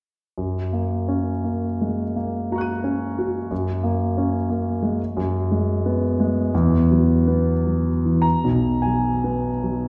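Dreamy and serene, this short excerpt from a longer impressionist classical solo piano piece unfolds in F# major at a rubato 50-61 BPM in 3/4, with a clear, natural concert grand playing from 0.4 to 9.9 seconds, its deep bass and long sustain up front and spanning B1 to D#7, as the harmony drifts from F#6 through G#m7/F# and Esus2 to B5 inside a wet recital hall reverb heard from further back in the room with a softened top end.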